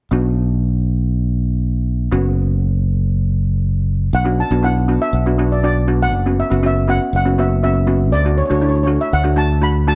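Calypso with a tense, dramatic mood, cut from a longer piece, in which bright cello pans struck with hard rubber sticks carry the chords over a punchy, direct fingered electric bass from the start, and at 4.1 seconds a mellow, dark lead steel pan played with soft rubber sticks joins them up front with tape echo, all set in a light small-room reverb.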